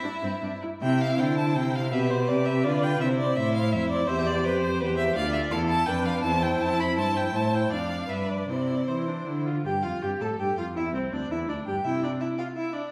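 Two violins and a viola begin together, with the cello entering at 0.2 s, in a quick, lively and graceful classical-period movement for string quartet in C major, at 164 BPM in 3/4 with a rubato feel. The first violin carries the melody in a rich, smooth tone with vibrato, while the second violin and viola supply a second line and accompaniment that sound clear, focused and distant, and the cello holds the bass close and up front with a rich, even, vibrato-laden sound. A recital hall's reverb places the quartet further back in the room, and a new section arrives at 9.6 s in this cut from a longer piece.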